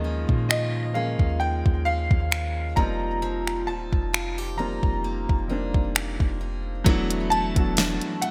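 This late-night, sensual contemporary R&B fragment opens on an intimate concert grand piano comping over deep, boomy 808-style bass and a boxy, parlour-sized steel-string acoustic guitar picking arpeggios through a digital delay, with faint finger squeak on its fresh strings. A smooth, electronic drum kit arrives at 0.3 seconds and sits up front, pairing a soft kick and fat, gated-reverb snare with hi-hat and finger snaps, all at a slow 66 BPM in 4/4 with a light sixteenth-note swing. A second, clearer grand piano carries the high melody from 0.5 seconds, touched by subtle chorus and digital delay. The harmony drifts through lush suspended ninth chords, D#9sus4, then F9sus4, and finally E9sus4. At 7.3 seconds a very quiet, crystalline FM synth bell adds a glassy shimmer, all set in a small room within a bright 1980s-style digital production.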